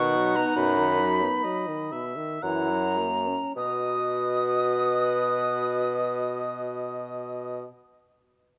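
Close, detailed microphones and light reverb frame this short passage, cut from a longer classical piece: a slow, lyrical romantic movement for wind quintet in B major and 3/4, played with rubato at 51-76 BPM and slowing down over its first 3.6 seconds. A hollow, pure concert flute sits up front with vibrato on the high melody, and a soft-attacked oboe with a smooth top carries the second line. A mellow, vintage-toned French horn and a warm clarinet set in the background fill out the accompaniment, while a clear bassoon, also up front, anchors the bass as the harmony moves from B through B/F# and F#7 back to B.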